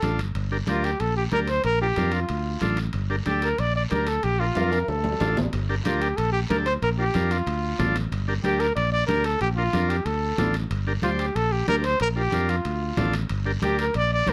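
Close, detailed microphones and light reverb frame this danceable, passionate cumbia excerpt. A breathy, whispered trumpet with light vibrato and scooped notes carries the melody up front, over a buzzy vintage combo organ and a dark, round, punchy fingered electric bass cycling through Gm, Bb and Dm. Soft-handed congas, a raspy guiro and ringing metal-shell timbales sit in the background, with a drum fill from 4.6 to 5.5 seconds.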